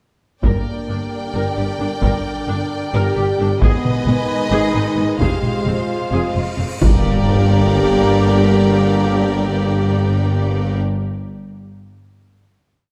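Epic orchestral film score in G phrygian, relentless and heroic at 264 BPM in 7/8, where a bright violin section carries the melody over a smooth second violin line, a driving viola ostinato, mellow French horns sustaining chords, lush background strings, tight trombone chords, and a focused cello ostinato doubled by a rich double bass, while hard-stick taiko strokes pound up front until 7.7 s and a huge cymbal swell at 6.5 s breaks into a low impact at 6.8 s as the strings and brass settle onto a final G minor chord, all in a moderate scoring-stage reverb with a dark, warm production.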